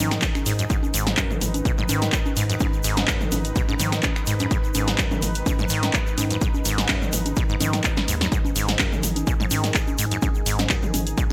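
A squelchy, resonant sawtooth acid bass riff with delay drives this raw, trippy acid house clip with a light swing, over a deep saturated sine sub bass, a lush detuned unison pad with chorus and vintage sampler grit, a punchy tape-warm drum machine of congas, finger snaps, handclaps, hi-hat, snare and toms alongside an up-front electronic kick, and a grainy shaker in the background, with sidechain pumping on the pad and both basses, a drum fill at 8.0 seconds, and light reverb and bright 1980s-style digital production.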